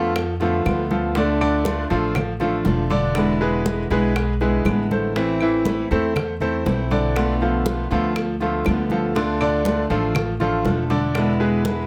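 A bright grand piano spins arpeggios through this nostalgic Cuban son and guajira excerpt, ringing with brilliant, long-sustained tone and an intimate touch that lets the action noise come through. Close beside it, a fingerpicked steel-string acoustic guitar carries the accompaniment with a warm concert sound and audible finger squeak, while a dark, thumpy upright bass with gut strings plays pizzicato up front. Set back in the mix, damped congas with a thick skin, tight high-tuned bongos struck with hard hands, and dry, woody claves fill out the percussion from 0.2 seconds. The music moves at a straight 120 BPM in 4/4, cycling through Bm7b5, Dm, E7 and Am before returning to Bm7b5 and Dm and landing on E7 at 11.2 seconds. The close, detailed recording keeps the room almost free of reverb, so each instrument sounds near and distinct.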